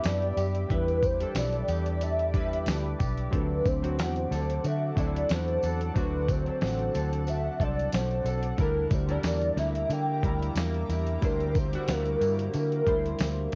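A cassette home recording with light reverb frames this sunny, nostalgic bedroom-pop cut at 91 BPM, lightly swung in 4/4. Up front sit a gritty, thumpy sampler-style drum kit and a round, foam-muted fingered bass, while a warbling, mellow lead carries the melody over glossy, detuned retro synth keys and a twangy, slightly broken-up electric guitar through a small old amp. A shimmering, ethereal pad with built-in reverb and a jingly tambourine sit in the background as the chords move from Em7 to D7 at 3.3 seconds and to Gm6/D at 8.6 seconds.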